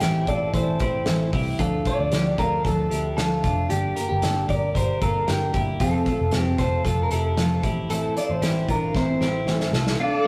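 This rough rehearsal-room recording sits in a stone room with a wet reverb, giving the whole band a close, echoing ambience, and it is tuned a touch low to A4 = 436 Hz. It's a short cut of jangly indie pop at 114 BPM in a straight 4/4, bittersweet and wistful, moving through Am, Dm, Gm, F and back to Am. A slightly broken-up, compressed electric guitar through a small old amp carries the melody, while a bright, twangy twelve-string electric guitar picks clean arpeggios above a full-bodied jumbo acoustic guitar that sits in the background with audible finger squeak. Underneath, a dark, round, foam-muted vintage bass gives a punchy low end, and a loose acoustic kit with a tight kick, medium-tuned snare and hi-hat pumps in its small room before a drum fill at 9.0 seconds. At 10.0 seconds a silky vintage string machine arrives up front with slow-attack sustained chords, its ensemble chorus adding a soft shimmer just as the passage breaks off.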